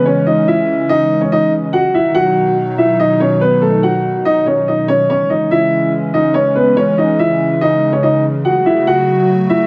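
Menacing and cold, this half-time hip hop excerpt sets a dark, boxy concert grand piano melody with deep bass, long sustain and an analog delay up front over a hollow, airy, flute-like soft pad holding chorus-treated chords throughout, all in a small, echo-heavy room.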